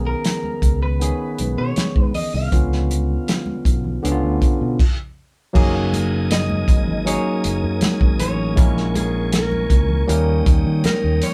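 Lush 1970s-style soul with a romantic mood, cut from a longer piece, where a barky, lightly overdriven tine electric piano and a round fingered bass carry the changes while a slightly broken-up, compressed electric guitar through a small old amp plays the melody. A tight, gritty drum kit with dark cymbals sits up front, and very quiet congas with soft hands add crisp, sparkling detail. After a brief band stop at 4.8 seconds, a smooth tonewheel organ with chorus vibrato and key click enters at 5.5 seconds with sustained chords, all in a moderate studio reverb that feels like a band playing live in one room.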